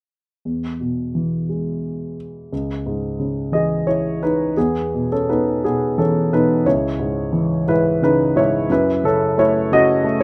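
Classical lyrical solo piano in E major, tender and warm, unfolding in a slow, rubato 6/8 at about 58 dotted-quarter beats per minute and cut from a longer piece. A dark, mellow concert grand sits up front and intimate, its deep bass reaching down to C#2 and the audible action noise adding a natural closeness, set in light reverb. The harmony drifts between E and C# minor before a second phrase begins at 4.6 seconds and settles on F# minor seventh near 8.7 seconds.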